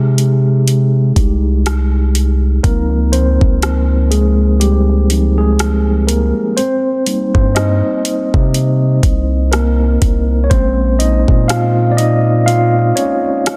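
Contemporary R&B at a slow 61 BPM in 4/4, this short passage cut from a longer piece has a moody, late-night feel, with a 58% swing on the sixteenths and tuning set to A4 = 442 Hz. A mellow, clean tine electric piano carries the solo across the whole passage, heard through its built-in speakers and sitting up front. Beneath it, a deep, sine-like 808-style bass holds long, sustained notes with a fast attack and a decaying tail before dropping out at 12.9 seconds. The electronic, produced drum kit enters at 0.2 seconds with a knocking kick, metallic hi-hats and a rim click, and soft clipping on the snare. The harmony moves from Abmaj7/C through Dbmaj7 and Cm7 to Bbm9, set in light reverb within a dense, heavily limited modern master.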